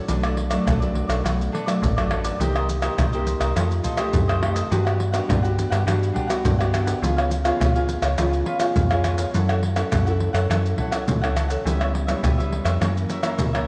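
A mellow, crisp cavaquinho and a full-bodied, fingerpicked nylon-string guitar open this sunny, joyful blend of samba and choro, cut from a longer piece in a straight 4/4. Almost at once a metallic FM bass joins with a fast attack and decaying digital notes, set against the acoustic strings. At that same moment maracas, surdo, pandeiro and tamborim enter together, up front with a tight surdo, soft hands and a vintage, band-limited tone. The harmony moves from Bm7 through Gmaj7 and C#7 to F#m7, closing on F#7 at 12.8 seconds. An echo chamber reverb of moderate size gives the ensemble a roomy glow, and all parts play on to the cut at 13.7 seconds.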